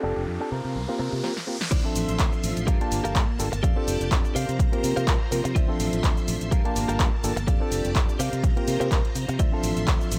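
A punchy, tape-warm electronic kick sits up front in this groovy, funky filtered disco house excerpt, arriving at 1.7 seconds as the drop lands and carrying the 125 BPM 4/4 pulse with a 16th-note swing. Before it, a riser, a filter sweep and a drum fill from the analog drum machine, which enters at 1.2 seconds, build the lead-in, with a small-room snare, handclaps, hi-hat, shaker and crash cymbal, its hats, cymbals and percussion all pumping against the sidechain. Underneath, a bright, growly fingered electric bass and a reedy electric piano heard through its built-in speakers with phaser fill out the groove, while a clean, compressed, picked electric guitar plays a riff. A lush, vintage string machine holds soft-attack sawtooth chords with ensemble chorus, and it joins the piano, guitar and bass in sidechain pumping and a low-pass filter. The harmony in D minor cycles through F6/9, C7sus4, Dm9 and Gm9 in a dry, close-sounding mix.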